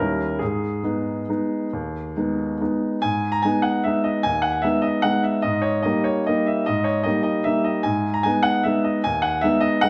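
Sparkling and elegant, this short excerpt from a classical piano waltz in G# minor moves in a rubato 3/4 at 133-159 BPM, its solo baby grand sounding clear, open and up front with long sustain, ranging from D#2 to A#5 in a moderate recital hall reverb, opening on a D#7b9 chord before settling on G#m and shifting into a new section at 3.0 seconds.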